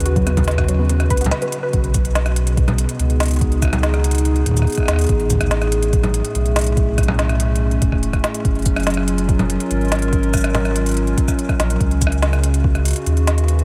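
A warbling, detuned tape-like pad with vintage 12-bit sampler grit, chorus and built-in reverb carries sustained chords from C#7sus4 through B6, Amaj7 and F#maj7 in this playful, intricate IDM excerpt in B lydian at 143 BPM, over a round sine sub bass, a soft electronic kick and an organic electronic kit of woody snare, crisp hats, cabasa, congas and rim clicks with delay, while a dusty, wave-folded pluck plays chorused, delayed arpeggios only from 0.1 to 1.7 s, the whole set in light digital ambience.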